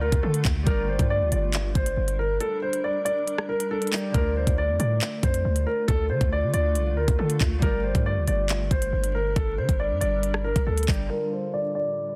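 A punchy, heavy 808-style bass and a knocking, crisp-hatted electronic drill kit with handclaps and rim clicks sit up front in this tense, cold half-time drill cut at 138 BPM in D minor, where a dark, mellow concert grand piano with audible action noise carries the filtered melody over a ringing, fingerpicked Celtic harp in the background and a blurred, detuned granular cloud pad, the kick dropping out from 2.4 to 4.1 seconds and a filter sweep arriving at 11.1 seconds beneath vinyl crackle and a dense, heavily limited master.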